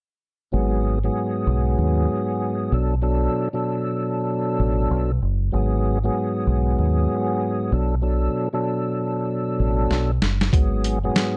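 At 96 BPM with a 62% swing on the 16ths, this gritty, dark boom-bap hip-hop excerpt in G# minor opens at 0.5 s on a fat, lightly overdriven tonewheel organ, its slow rotary speaker, chorus vibrato and key click wrapped in a cassette-tape haze, alternating G#m7 and Bm7 over a round, deep dub fingered electric bass. The sampler-style drum kit arrives only at 9.9 s with a fill, its compressed, pitched-down sound pairing a thumpy kick and medium-tuned snare with hi-hat. Everything sits up front in a dry, dark production.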